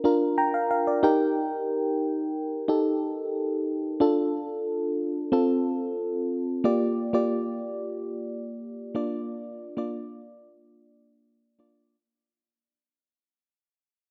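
A lush hall reverb with a long tail surrounds this short pop recording, which is cut from a longer piece. The only instrument is an FM electric piano, placed up front, with a vintage, warbling tone, a fast attack, decaying notes and a layer of noise beneath its dark timbre. It opens with a brief fill at 0.1 seconds and moves through Bb, Eb, Dm and F in a steady, straight four-beat pulse. A second section begins at 6.6 seconds, settling on Gm7 and then back to Bb as the recording fades out through to 11.9 seconds. The mood is glossy and nostalgic.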